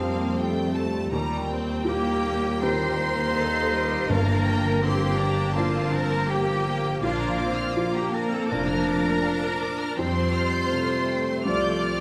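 A moderate scoring-stage reverb surrounds this moving, longing cinematic film-score excerpt in free rubato time. A clear, focused violin section carries the high melody with vibrato over a smoother, more distant second violin line, while a bright clarinet with a soft attack adds another line in the background. Lush violas and a very quiet, intimate felt-muted upright piano with audible action noise fill the accompaniment, a mellow French horn section holds sustained chords, a ringing, thumb-plucked concert harp plays arpeggios, and rich cellos and a close double bass section anchor the low end as hard-mallet timpani sound from 4.1 to 5.2 seconds over chords moving from Fsus2 through Gm7 and Bb back to Fsus2.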